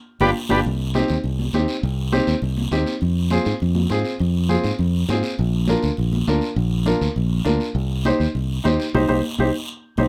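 A straight 4/4 cumbia groove at 203 BPM in C minor powers this danceable, driving fragment of a longer piece, opening with a band accent on G7 as a buzzy, overdriven vintage combo organ with heavy vibrato flashes a brief melody from 0.2 to 0.6 seconds, while from that same moment a woody upright piano with short sustain carries the accompaniment through Cm, Fm and Bb, a punchy fingered electric bass sits up front, bright, high-tuned congas played with hard hands stay in the background, a raspy guiro scrapes along, light reverb surrounds the band, and another full-band accent arrives at 8.9 seconds.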